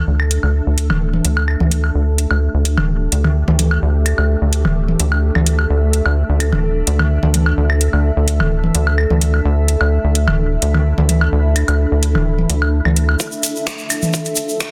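A rubbery, nasal square bass pumps up front through most of this quirky, sparse minimal techno excerpt, under a cloudy granular pad, a swarming detuned drone in the background, overdriven garage snaps with metallic hats, and echoing electronic woodblock and toms, until the bass drops out and a knocking electronic kick and a grainy egg shaker arrive at 13.2 seconds for a short build-up.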